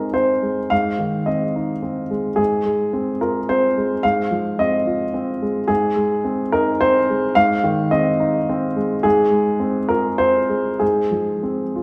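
A warm upright piano plays alone through this short excerpt cut from a longer neoclassical minimalist piece, its woody, natural tone sitting up front with the audible noise of its action close at hand. The mood is intimate and hopeful, set in Ab major at 107 BPM in 3/4, with a rubato feel that lets the time breathe. The piano ranges from Ab2 up to F5, resting on an Ab chord before moving to Fm/Ab at 9.0 seconds. A recital hall reverb with a 1.5-second tail surrounds the instrument, giving the sound the airy bloom of a church or concert hall. The passage runs to 11.8 seconds and feels like a fragment of something larger.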